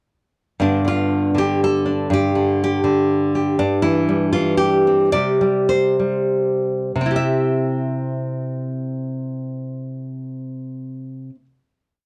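The recording carries the worn, warbling character of old cassette tape, with a warbly pitch drift and a light reverb around the instrument. It is a short, complete folk piece for solo fingerstyle nylon-string guitar in C major and 3/4 time, nostalgic yet hopeful in mood, with a tempo that moves between 88 and 122 BPM. The guitar sits up front with a bright, full-bodied tone and the fresh-string sound of a classical instrument, and small finger squeaks can be heard as it is fingerpicked. Rolling arpeggios carry a song-like, motif-based melody through a progression of G, C/G and C5, and the pace slows from 3.6 to 7.0 seconds. At 7.0 seconds the piece settles onto a final C chord that lasts until 11.0 seconds, and the guitar rings out until 11.5 seconds.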